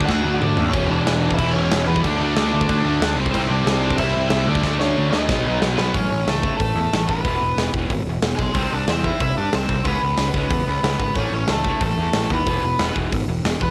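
A straight, driving 4/4 beat from a big, up-front acoustic rock kit, with a punchy kick, crash cymbals and fills at the start and from 4.6 to 5.9 seconds, powers this rowdy, energetic punk rock excerpt, where a bright, overdriven lead guitar carries the melody over a fuzzy, overdriven picked bass, a double-tracked distorted rhythm guitar sitting in the background, and a thick fuzz guitar riff that drops out at 5.9 seconds, recorded at home on cassette in a small room.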